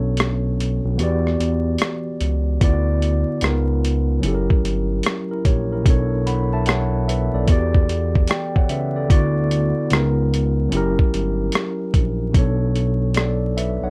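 Vinyl crackle and a light reverb frame this short lo-fi hip hop cut, taken from a longer piece. The mood is nostalgic and mellow, set at 74 BPM in 4/4 with a 65% swing on the sixteenths. A clean tine electric piano sits up front with a cassette-tape coloring, spanning B2 to B5 across a progression of Bm7, Em7, D6, C#13 and F#7b9 that returns to Bm7 at 12.3 seconds. Beneath it, a smooth synth bass blending sawtooth and square waves glides between notes with portamento and vibrato, its fast attack giving way to sustained tones from F#1 to E2. The sampler-style drum kit enters at 0.2 seconds with hi-hat, rim click and a thumpy, compressed kick that drops out from 1.0 to 2.6 seconds, its muffled, small-room character sitting forward in the mix.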